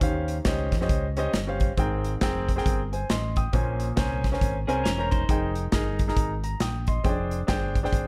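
Uptempo gospel at 137 BPM in Ab major with swung eighths, jubilant and reverent, featuring a clear, up-front baby grand piano accompanying through rich extended chords from Eb13 to Fm13, over a round, punchy fingered electric bass and an airy, polished studio drum kit with a medium-tuned snare, while a bright, twangy clean electric guitar adds a brief picked line from 4.7 to 5.5 seconds, the whole mix sitting in light studio reverb within a dark, warm production.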